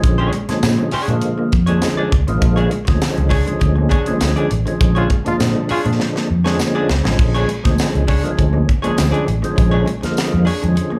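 Playful and gritty, this funk excerpt at 101 BPM in 4/4 sits on a Bb7#9 in Bb mixolydian, heard live through a club PA with light reverb and room ambience. A punchy, foam-muted fingered bass and an up-front fusion kit with a high-tuned snare anchor the groove, while a fat, lightly overdriven tonewheel organ with key click and slow rotary stabs over a hollow-body archtop guitar comping in plate reverb, a compressed, mellow electric guitar riffing in the background and a jingly tambourine. Around 5.0 seconds the band hits an accent and a bright trombone pops out a brief second line with light vibrato, followed by a drum fill at 6.0 seconds.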